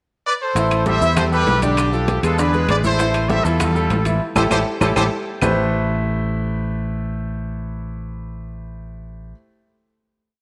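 Salsa in A minor at a brisk 197 BPM, danceable and passionate, opening with a brilliant up-front horn section that enters on the pickup at 0.3 seconds with a motif-based melody in light vibrato, partly doubled in thirds, over a clear, smooth grand piano montuno in octaves and a round, fingered electric bass tumbao that anticipates the chords. Beneath them sits a quiet percussion bed: tight high-tuned bongos in steady eighths, bright congas with slaps and open strokes, ringing metal-shell timbales, a woody two-bar clave line and grainy maracas. A band accent and drum fill drive into a final Am9 chord at 5.4 seconds, where the piano and bass ring on until 9.3 seconds in a wet echo-chamber reverb.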